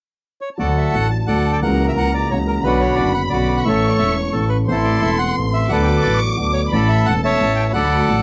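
A reedy, airy bandoneon steps up front at 0.4 s with the melody of this passionate, playful tango excerpt in D major, a rubato 3/4 at 176 BPM, joined at 0.6 s by a lush, distant violin section carrying a high bowed second line with expressive vibrato, an intimate grand piano accompaniment with long sustain and audible action noise, and a focused, clear bowed double bass, all caught in a dry, close 1970s-style studio recording that moves through D, F#7/C#, Bmadd9, A, Am and D6.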